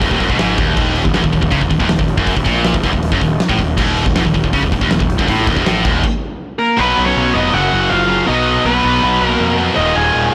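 Two bright, high-gain guitars open this dark, heavy metal excerpt together with an overdriven, punchy fuzz bass and an up-front acoustic drum kit, driving a straight 4/4 riff in Eb minor at 160 BPM. The kit sounds big and roomy, with a fat snare, a punchy kick, hi-hat and crash, and a rolled-off top, and one of the riff guitars sits farther back in the mix. The drums drop out at 6.1 seconds as the band breaks for a brief stop. A distorted lead guitar enters up front at 6.6 seconds carrying the melody through an analog delay, shadowed by a very quiet, darker second line an octave lower. At 6.8 seconds the riff resumes over chords moving from B5 to Gb5, B and Eb5, joined by a faint, double-tracked, compressed fuzz guitar. The whole recording feels blown-out and overdriven, heard in a small room.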